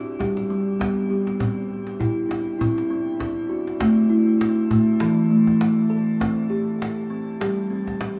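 A kalimba opens at 0.0 seconds with ringing arpeggios, its woody, hollow-box tone plucked softly with the fingertips and set up front, trailed by a shimmer reverb. This is a calm, dreamy piece of meditative world music built on tuned percussion, moving at 100 BPM in 4/4 with a light 16th-note swing and rooted in C lydian. A cajon joins at 0.2 seconds, sitting well beneath the kalimba, with a close, acoustic sound of hard hands on wood and faint snares. The harmony moves from G to C, then turns to A minor at 3.8 seconds, where a second section begins before settling on a bare C5. The kalimba stays mellow and dark through its range, and a wet cathedral reverb with a long 5.4-second decay surrounds the whole fragment, which is cut from a longer work.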